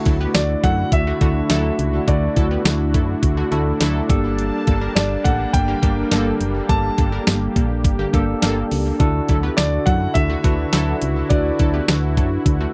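A clear grand piano carries the melody with a present sound, its intimate, polished tone touched by tape echo and audible action noise, entering at 0.3 seconds and ringing out until 11.8 seconds. This short excerpt of glossy, uplifting 1980s-style pop moves at 104 BPM in a straight 4/4, centered in D major and shifting from Dadd9 to Gmadd9 at 4.1 seconds before returning to Dadd9. A bell-like tine electric piano supplies bright accompaniment, while a smooth, detuned analog pad holds sustained chords with chorus and tremolo. A funky polysynth comp adds punchy, warbling sawtooth stabs with a filter sweep, chorus and tape echo, and a round, dark FM bass gives a solid, fast-attack foundation. A clean 12-bit drum machine with a thumpy kick, medium-tuned snare, hi-hat and tambourine sits close and forward in a dry, close studio sound with little reverb.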